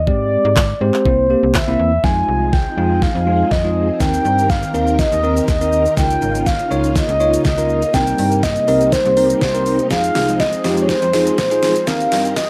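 Dance-pop at 122 BPM in a straight 4/4, this energetic, driving clip is cut from a longer piece and opens with a round, horn-like synth lead carrying the melody up front, with chorus, digital delay and vibrato, over a snappy FM slap bass with a metallic attack, a bell-like tine electric piano, and a layered electronic pop kit of knocking kick, deep snare, hi-hat, shaker and handclaps, overdriven and re-recorded in a small room. At 2.0 seconds a shimmering string-machine violin pad enters with ensemble chorus, and the bass, electric piano and strings carry sidechain pumping as a build-up, drum fill and filter sweep run to the end over chords moving from Fm7 through Cm7/Eb, Db69 and Cm7. The sound is a rough home demo mix in a digital ambience with a high-pass filter.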